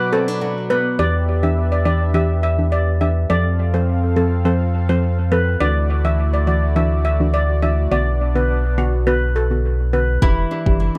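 A straight 4/4 dancehall groove at 104 BPM in E minor drives this bouncy, sultry excerpt, which opens on a brief break where a fingerpicked classical nylon-string guitar, complete with finger squeak, meets a smooth, detuned analog pad washed in chorus and tremolo. From 1.0 s a deep, up-front sub bass with octave and a soft, round, dark pluck with sidechain pumping join the metallic, bright steel pan lead, which rings through dub echo over chords moving from Em7 through F, Dadd9 and Bm. At 10.2 s the pad drops away as a produced electronic kick, very quiet high-tuned bongos and a picked bowl-back mandolin with double strings enter beside the returning guitar, inside an echo-heavy mix with light small-room reverb.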